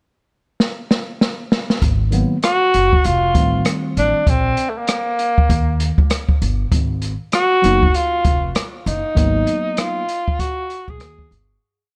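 A gritty, boomy jazz kit opens with a fill at 0.6 seconds before a swung boom-bap beat settles in, joined by a woody pizzicato upright bass with slides, a worn, slightly out-of-tune tine electric piano comping freely, and an up-front tenor saxophone with vibrato and subtone singing motif-based phrases, giving this mellow, cool jazz-hop piece a small-room intimacy until it fades out from 9.2 seconds.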